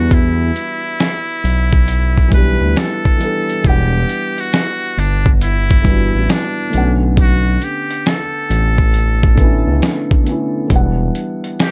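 A muted trumpet and a felt-muted upright piano open this lo-fi hip hop excerpt together, setting a melancholic, nostalgic mood at a slow 68 BPM in E dorian with a swung sixteenth-note feel. The trumpet carries the melody in a buzzy, breathy jazz voice with light vibrato and a soft attack, while the piano accompanies with a dark, mellow tone, its thick felt and audible action noise giving it an intimate, vintage character. Underneath, a smooth sawtooth-and-triangle synth bass glides between notes with portamento and vibrato, sitting up front in the mix and stopping at 11.1 seconds. A gritty, compressed sampler-style drum kit with a thumpy kick, fat snare and hi-hat comes in at 0.1 seconds, also placed up front, and sounds re-recorded in a small room. The harmony moves from Em9 to Bm9 at 6.7 seconds before returning to Em9, all captured as a dry, gritty hardware recording with little reverb.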